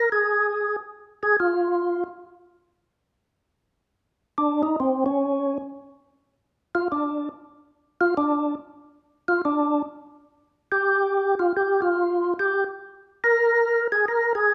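Set in a moderate large-studio reverb, this swinging, bluesy jazz fragment from a longer piece features a fat, lightly overdriven tonewheel organ playing alone and up front for all 14.5 seconds, with second-harmonic percussion, key click, chorus vibrato and a slow rotary speaker.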